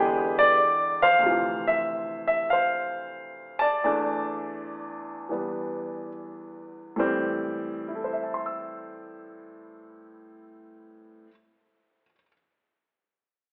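Late-night and moody, this fragment of solo jazz features a lone baby grand piano, natural and up front, played with swing and rubato over E7#9, Dm9, E7sus4 and Am7 chords, slowing down between 1.2 s and 7.0 s, and heard through a wet recital hall reverb with a telephone-like sound.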